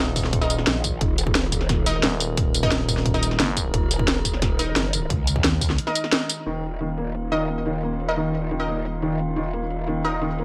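Dark, futuristic technical drum and bass, this excerpt opens on a drop where a thick FM bass growls beneath a punchy electronic kick and a drum kit of hi-hat, tambourine and up-front cracking snare, all filtered. An eerie, nasal, warbling drone with chorus and sidechain pumping sits in the background, while bold, detuned orchestra-hit-like stabs ring out with reverb and delay, and an aggressive, saturated, wobbling growl bass pushes to the front. The FM bass stops at 3.7 s and the kick at 5.7 s, and after a band accent a soft, intimate felt-muted upright piano enters at 6.5 s with filtered, delayed arpeggios.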